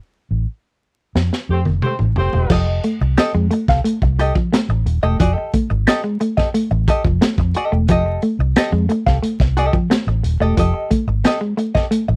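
Funk with an energetic, gritty edge, cut from a longer piece: a round, foam-muted electric bass opens at 0.3 s, and a crunchy breakbeat kit with a punchy kick, high-tuned snare and dark cymbals enters with a fill under a band accent before a mellow, distant horn section briefly doubles in octaves. At 2.5 s the groove settles over an F9 chord, with a compressed hollow-body jazz guitar played through wah and a slightly broken-up electric guitar riff carrying harmonic tremolo. The sound is dry and close in a 1970s studio style, with vinyl crackle and a saturated, rolled-off top on the drums.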